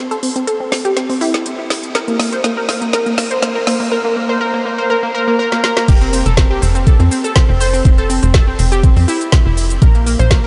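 Expansive and hopeful, this progressive house passage at 122 BPM in F major opens with a round, warbling analog pluck whose arpeggios carry chorus, delay, sidechain pumping and a vintage 12-bit grit, a filter sweep moving through the build-up over a deep house drum kit with a woody snare, smooth hats, shaker and crash, plus drum fills. At 5.9 seconds the drop arrives on an F5 chord as a tight, punchy sequencer bass enters alongside an overdriven, knocking electronic kick drum set up front, moving to Bb5 at 9.8 seconds. A huge ambient reverb soaks the dreamy mix, which has a softened top end.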